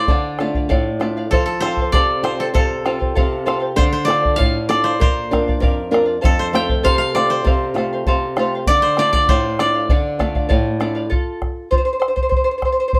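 A dry, woody koto played with fingerpicks carries the melody up front in this melancholic yet festive Andean folk excerpt at 98 BPM in 2/4, over a shimmering double-strung charango, a boxy fingerpicked flamenco guitar with audible finger squeak, and a deep, dark bombo, moving through D minor, F and B-flat before the charango takes a solo over the bombo from 11.1 s to the end at 13.0 s, all in a moderate studio reverb.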